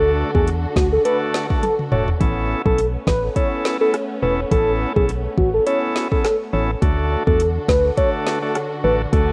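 A dancehall groove at 104 BPM in 4/4 rolls with a light swing on the sixteenths, and the afro-pop drum kit enters at 0.3 seconds with a deep kick, woody snare, metallic hats, rim clicks and toms, adding a fill between 1.6 and 2.2 seconds. Underneath, an organ-like FM bass sits up front with a hollow, percussive tone, fast attack and dark, decaying notes. A bright, reedy tonewheel organ carries the accompaniment through a stationary speaker, while a muted studio string section holds lush, veiled chords with a sidechain pumping effect. On top, a velvety synth lead sings the melody with chorus, vibrato and tape echo, its wave-folded tone smooth and sustained. Cut from a longer piece in A major, this summery, sunny passage moves from D to Aadd9 and back to D, captured as a home recording on cassette with light reverb.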